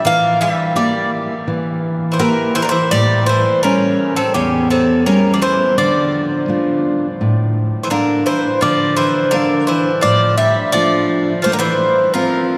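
Two Greek bouzoukis open this moody fragment of Greek folk music at once: one carries the melody up front with a metallic, picked ring from its doubled strings, while the other plays a brighter second line lower down. A fingerpicked steel-string acoustic guitar joins a moment later at 0.1 seconds. It sits forward in the blend, and its warm, auditorium-sized body spans from deep bass notes to high treble as it accompanies the bouzoukis. The harmony moves from E diminished to A7 and settles on D minor, reaching F near the close. A long cathedral reverb from a church or concert hall surrounds the three instruments, giving the cool, straight-feel playing a spacious, echoing air. The opening section returns at 8.6 seconds before the fragment breaks off at 12.6 seconds.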